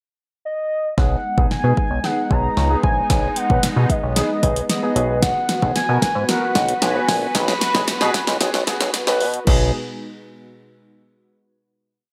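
A velvety, chorused synth lead opens this carefree, euphoric dance-pop piece in B major at 113 BPM, carrying a motif-based melody with vibrato before the straight 4/4 groove arrives at 1.0 s: a deep house drum kit with deep kick, fat snare and gated reverb; a glossy, nasal synth bass with syncopation, ghost notes and chromatic approach notes; and an intimate grand piano with audible action noise playing close-voiced syncopated chords. An airy, detuned sawtooth pad with a filter swell joins at 1.3 s in the background, and the bass, piano and pad all pump with sidechain. A long build runs under a drum fill and filter sweep from B6 through G#m7 until a final B6 chord at 9.5 s, all within bright 1980s-style digital production and moderate plate reverb.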